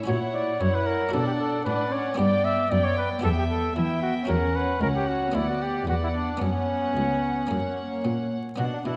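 A festive, lively baroque-style concerto movement opens at 0.0 s with chamber violins, violas and a buff-stop harpsichord together, moving at 114 BPM in a straight 4/4. A mellow, vintage-toned solo trumpet enters up front at 0.1 s to carry the melody in a classical style, alongside a rich, focused violin section singing high above with bowed vibrato. A second violin section adds a smooth, even second line, while bowed violas fill the middle with expressive accompaniment and the cellos, also arriving at 0.1 s, supply the bass with a warm yet slightly distant tone. Tucked in the background, the dry, muted, lute-like plucking of the French-style harpsichord sketches the harmony through F#7/A#, Bm, G, Em, F#5/E and Bm/D before settling on F#sus4 and F#. A moderate concert hall reverb surrounds the ensemble, a layer of vinyl crackle gives an aged patina, and the top violins drop out at 8.4 s just before this short fragment of a longer piece ends.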